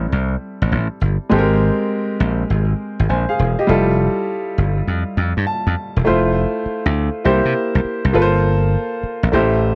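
This dry, close recording has the feel of a 1970s studio, with a small room adding only a touch of reverb. It is a short, confident and slick piece of R&B in the new jack swing style, cut from a longer piece and moving at 101 BPM in 4/4, with a 67% swing on the sixteenths and tuning set to A4 = 439 Hz. A punchy, bright electric slap bass sits up front, while a clear baby grand piano carries the accompaniment in an intimate, natural tone, its action noise audible. The harmony moves from Am7 through Abmaj9 to Fmaj9, and at 5.2 seconds the piano plays a fill that leads into a new section at 6.1 seconds. From there the chords shift through Fmaj7 and C7 to Gm11, and the bass stops at 9.7 seconds, a moment before the piano as the excerpt ends.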